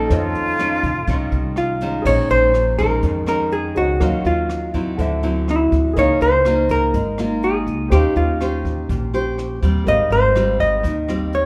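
Moderate recital-hall reverb gives this wistful, smooth bossa nova fragment, cut from a longer piece, the resonant air of a church or concert hall. Up front, a clean, dark hollow-body electric jazz guitar picks the melody, while a fingerpicked classical nylon-string guitar supplies warm accompaniment and a baby grand piano with short sustain sits naturally in the background. A pizzicato upright bass with steel strings adds a woody, thumpy low end, and a brushed drum kit with dark cymbals, a boomy kick, hi-hat and rim clicks keeps a smooth, rolled-off pulse. An airy silver concert flute with vibrato briefly sounds a tongued second line from 0.1 to 1.8 seconds. The harmony opens on F7b13, settles onto Bbm11 at 2.1 seconds, and moves through rich extended chords such as Ebm9, D9 and Db69 before arriving at Abmaj13.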